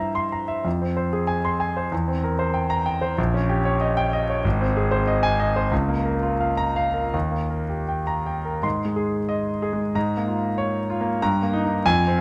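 Heard through close, detailed microphones with light reverb, this brief passage cut from a longer romantic classical character piece for solo concert grand piano unfolds in a hopeful, lyrical mood, its flexible rubato in 2/4 carried by an intimate, polished tone with deep bass, long sustain and audible action noise, before moving into a new section at 8.6 seconds.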